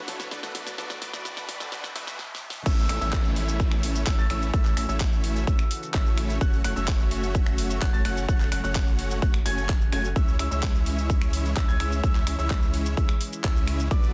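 Dense, heavily limited and nearly dry, this euphoric, anthemic festival progressive house cut opens on a build-up of drum fills from a pop kit, a background riser and noise sweep, and a brief twangy, slightly broken-up guitar over a lush detuned pad, a huge sawtooth supersaw riff with tape echo, and a deep saturated sub bass, all pumping with sidechain, until the drop at 2.7 seconds brings in a punchy, up-front electronic kick beneath the kit's fat snare, claps, snaps and shaker, along with mellow, vintage-toned grand piano arpeggios high above.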